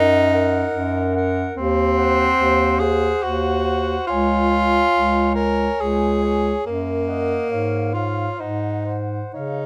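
This classical excerpt for a single-reed quartet is tender and lyrical, moving in an unhurried 3/4 at 62-74 BPM with a rubato feel in Db major. A dark, distant clarinet carries the melody high in its range, while a close-miked alto saxophone sings a second line just beneath it; both sit in the background of the mix. Up front, the tenor saxophone supplies the accompaniment, and it shares a clear tone with the alto. The bass clarinet anchors the low end with a warm, roomy sound that also sits forward. The harmony drifts from Ebm/Gb through Cdim/Eb to Db, then returns to Ebm/Gb and Db/Ab before resting on Ab7 at 8.4 seconds. All four instruments play throughout the 9.7 seconds, and light reverb gives the performance a soft, intimate glow.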